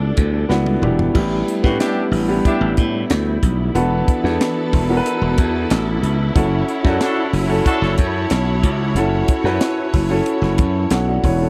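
A dry, close studio sound frames this glossy, upbeat fragment of polished 1980s jazz-funk pop at 92 BPM in D major, where a growly, punchy slap bass and a tight funk drum kit with bright cymbals and a high-tuned snare sit up front beside a concert grand piano with deep bass, long sustain and subtle chorus, lush bowed strings hold sustained chords underneath, a drum fill arrives at 0.5 seconds, and a mellow horn section with light vibrato and soft attack adds a brief second line at 1.6 and 6.8 seconds over suspended chords that settle on Dmaj7/F#.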